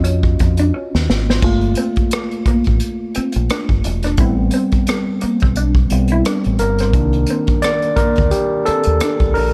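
Introspective and late-night, this short R&B and neo-soul passage at 87 BPM sways with a swung 16th-note feel as an overdriven, gritty tine electric piano takes the solo up front, running from 0.0 to 9.5 seconds over minor ninth chords moving from Ebm9 to Gm9, Am9 and Cm9. Beneath it, a deep dub fingered electric bass sits round and punchy, while an unplugged acoustic drum kit played with bundle sticks offers dark cymbals, a medium-tuned snare, rim clicks and a splash, with a drum fill from 0.7 to 1.4 seconds. A slightly broken-up, lo-fi electric guitar through a small old amp adds a picked second line colored by phaser, all set in a small room with light reverb.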